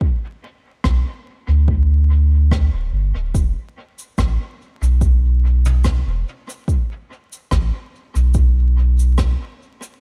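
Ambient dub with a hazy, meditative mood and a lightly swung 4/4 groove, cut from a longer piece. A deep, tape-warm electronic kick sits up front and plays alone until 0.8 s, when a round, soft sub bass and an acoustic jazz brush kit enter; the bass has a fast attack and sustained notes, while the brushes, cabasa, rim clicks and toms are set back and treated with dub echo. The mix is dry, with vinyl crackle running through it.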